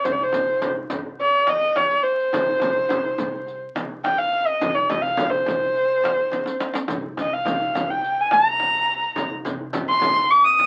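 A straight 4/4 pulse at 105 BPM drives this hypnotic, longing Persian modal ensemble piece in C dastgah shur, cut from a longer performance, where a deep, distant frame drum, a riq with bright jingles and a tight, saturated tombak set back in the mix keep the groove, with a drum fill at 6.3 seconds. Up front, a single bowed kamancheh carries the melody with a dark, intimate tone, light vibrato, soft attack and portamento, while a woody pizzicato upright bass sits in the background. The sound has the crackle of a very old 78 rpm record and the moderate reverb of a small room.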